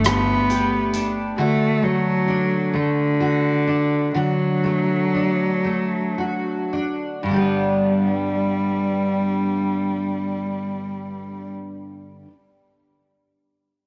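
Swaying and romantic, this short six-eight pop ballad in G major moves at a slow 35-45 BPM, counted in dotted quarters, and it is cut from a longer piece. A clear, focused cello carries the melody up front with a single bowed player's vibrato and a slightly boxy tone, singing in a low register until 11.5 seconds. Beneath it, a double-tracked, picked steel-string acoustic guitar with fresh strings gives a full-bodied jumbo accompaniment that lasts to 12.3 seconds. A dark, round, foam-muted electric bass sounds only a brief G at the very start, while a big-room arena kit adds a touch of hi-hat and rim click during just the opening 1.1 seconds. The harmony moves from Gsus2 to D, the tempo slows between 1.4 and 7.3 seconds, and a G chord opens the next section at 7.3 seconds. Light reverb and studio ambience surround the parts, and the whole take carries the warble and pitch drift of worn old cassette tape.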